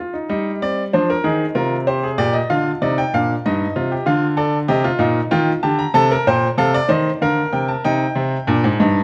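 A lone baby grand piano opens this short fragment of a baroque-style fugue in three voices, its clear, intimate tone placed up front with the clatter of the action audible beneath the notes. The writing moves in a straight three-beat metre, and the mood is at once driving and solemn as the interwoven lines span from low G2 to high Bb5. The harmony begins on a major chord in first inversion at 0.3 seconds and passes through a chain of related major chords before turning to a minor chord at 7.9 seconds, where a new section begins and lasts until the clip breaks off at 9.0 seconds. Close, detailed microphones capture the instrument's natural character and long sustain, while a moderate recital-hall reverb gives the notes a sense of space around them.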